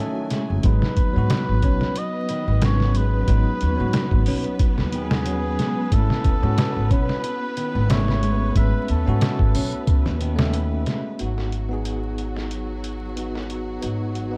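A dark, warm production with vinyl crackle and small room ambience frames this hypnotic trip hop excerpt, moving at 91 BPM in 4/4 with a light swing on the sixteenths in G# phrygian. Up front, a compressed, pitched-down sampler-style drum kit lays down a muffled, thumpy kick, a medium-tuned snare and hi-hat, all high-pass filtered and re-recorded in a small room, while a woody, pizzicato upright bass sits alongside it from 0.5 seconds. A bell-like tine electric piano with tremolo supplies bright, clean accompaniment, and a clear, focused studio string section holds bowed chords with vibrato. A cup-muted trumpet carries the jazz-style solo melody until 10.2 seconds, its veiled, breathy tone with a smooth top roughened by vintage 12-bit sampler grit and tape echo. In the background, a small, fingerpicked nylon-string guitar plays arpeggios through tape echo until 11.2 seconds, as the harmony moves from G#m7 to A/G# and back to G#m7.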